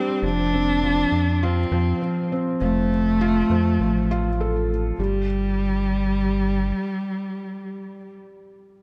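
A dark, woody cello carries the melody with vibrato in this moving, cinematic piano and strings electronica, cut from a longer piece and set at 101 BPM in a straight 4/4, tuned to A4 = 438 Hz. Alongside it, a felt-muted upright piano plays a soft, intimate riff with audible action noise and digital delay. A round analog bass with tube saturation, blending sawtooth and sine with ring modulation, plays beneath the F chord from 0.2 seconds until it stops at 6.7 seconds. The drop opens the recording, and the harmony drops out at 5.0 seconds, all set in a small room with light reverb.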